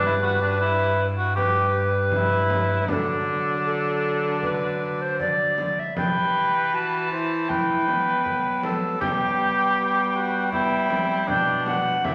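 A straight 4/4 pulse at 79 BPM carries this festive, courtly renaissance-style consort dance, cut from a longer piece, as an airy, chiffy tenor recorder sings the melody up front over a mellow cor anglais second line, a clear trombone with light vibrato in accompaniment and a rich, gut-string bowed cello bass, while a deep, distant frame drum joins at 1.4 seconds and the harmony moves from G through D and E minor back to G in a reverberant recital hall.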